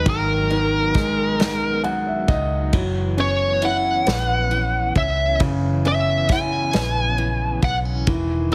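A smooth, overdriven lead guitar sings the melody up front over a concert grand piano with a deep low end, while a clean, direct-recorded electric guitar ripples tremolo-tinged arpeggios in the background, in this tender, swaying six-eight pop ballad at 45 BPM, cut from a longer piece. A foam-muted, round vintage bass plays from the start, and an acoustic kit played with bundle sticks, its cymbals dark and kick punchy, enters at 0.1 seconds, both sitting beneath a grand piano fill from 1.4 to 2.7 seconds as the harmony moves from G#m7 to F#7sus4. Light reverb and small room ambience sit under a heavily compressed, radio-like sound.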